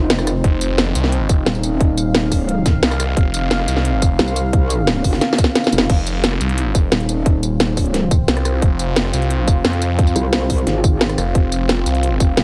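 This excerpt of dark technical drum and bass has a digital ambience, with a tense, futuristic mood at 176 BPM in a straight 4/4. A deep, moody pad holds sustained chords on a slow attack and long release, carrying chorus, its own reverb and sidechain pumping beneath the busier parts. Two basses sit up front: a metallic, aggressive wobble bass with chorus and compression, and a swirling, thick detuned saw bass pushed through a phaser and tube saturation that pumps from 0.4 seconds. The tight electronic kick is the loudest element, joined by a layered kit with a cracking snare, metallic hats, rim clicks, tambourine and crash, carrying a tape tone from a small room. The excerpt stays in drop mode throughout, with a drum fill at 5.2 seconds leading into a repeat of the same section at 5.9 seconds.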